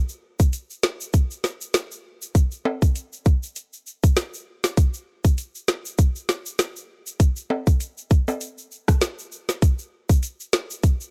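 A lightly swung 4/4 dancehall groove, sunny and summery, is carried by an up-front electronic island pop drum kit with a tight kick, woody snare, rim click and metallic hi-hats, while a quieter tube shaker and ringing timbales sit close and dry beneath it in this gritty cut from a longer piece, which carries little reverb.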